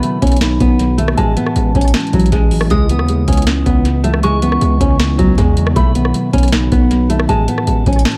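A melancholic, menacing trap cut from a longer hip hop piece, riding a half-time feel over B, Amaj7 and C#m7 chords, with a woody, thumb-plucked nylon-string guitar carrying the melody up front through analog delay while a soft, pure FM bell with chorus and phaser traces a second line high above. Muted, felt-like synth keys supply hushed accompaniment in the background, an ethereal, detuned pad holds very quiet sustained chords, and a booming analog drum machine, dry with a deep kick, crisp snare, rim click and metallic hats, sits up front. A heavy, saturated 808-style bass enters at 0.2 seconds, and the echo-heavy mix carries a layer of vinyl crackle with little reverb.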